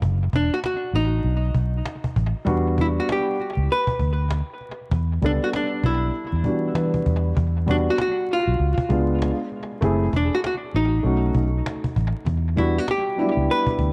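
Swung sixteenths give this nocturnal, smoky jazz-hop cut a loose, lazy sway, carried by a round, punchy foam-muted electric bass up front and a woody, close cajon with faint snares, roughened by 12-bit sampler grit and analog delay. A clean, picked hollow-body archtop guitar takes the melody almost from the start, and a mellow concert grand with deep bass joins at 2.4 seconds, adding a brief fill at 6.5 seconds, both of them trailing analog delay. The echo-heavy mix sits in a small room with light reverb and vinyl crackle, and the chords drift through dusky extended and altered harmonies.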